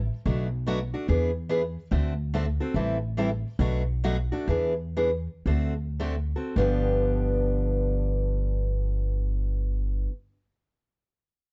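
Lively and swinging, this short cut from a longer piece of acoustic string swing in the jazz manouche style moves in 4/4 with a swing feel on the eighth notes, set in G mixolydian at a tempo between 101 and 144 BPM. An upright bass, plucked on gut strings, opens the passage with a woody, thumpy tone that sits up front in a low register. A picked steel-string acoustic guitar enters as accompaniment at 0.3 seconds, warm and roomy like an auditorium, with audible finger squeak and an equally close placement. The harmony cycles through Bm7, E7, D7 and Am7, and the pace slows between 2.8 and 6.6 seconds before a G7 chord opens a new section. The production is dark, with little reverb and a rounded top end, giving the duo an intimate, close-up sound.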